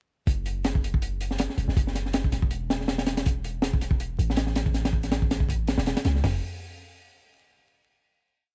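A dark, nostalgic jungle-style drum and bass piece opens at 0.3 seconds straight into its drop, with a crunchy breakbeat drum kit and a long, sustained 808-style bass arriving together. The heavily chopped breakbeat sits up front, its acoustic kit of kick, snare, hi-hat and toms sounding saturated and gritty, with a punchy kick, a high-tuned snare and a rolled-off top in a small room. A slight swing on the sixteenths gives the beat a subtle lilt. Beneath it, the deep sine bass plays long gliding notes with a fast attack that decay into a mellow low end. The sound is dry, with vinyl crackle and lossy compression artefacts adding a worn texture, and at 6.2 seconds the drop gives way to a final note that closes the piece at 7.7 seconds, the bass fading out by 6.4 seconds.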